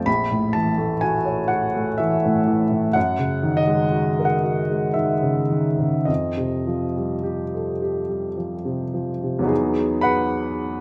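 In a lilting triple metre with a freely stretching rubato, this short excerpt of impressionist solo classical piano unfolds at an unhurried pace, its mood dreamy and serene. A baby grand piano carries everything alone from 0.0 to 10.8 seconds, its tone clear and natural, with long sustain letting each colourful chord ring on, and the sound of its action audible beneath the notes. Rich extended harmonies drift through an F#7#9 over A#, then F#13 and F9, before the passage turns at 9.5 seconds to a glowing Emaj9 as a new section begins. The close, detailed microphones place the instrument up front and intimate, while a moderate recital hall reverb adds a gentle halo of space around it. The playing spans from deep bass up into the upper treble, giving the brief passage a full, floating resonance.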